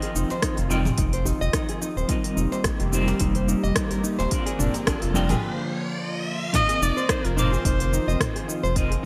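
A rich, bowed kamancheh with smooth vibrato and portamento takes the melody up front from 6.5 seconds in this hypnotic, warm organic downtempo excerpt at 108 BPM with a swung sixteenth feel, following a riser and a short break, over a round, wave-folded analog bass, an overdriven electronic kick and smooth-hatted electronic kit with cabasa, rim click, toms and gated reverb, a tight, cracking djembe in the background until 5.4 seconds, dark fingerpicked nylon-string guitar arpeggios with finger squeak, clean picked electric guitar with tremolo, sidechain pumping and delay, and an airy, breathy chorused pad, all set in a lush hall with bright 1980s-style digital sheen.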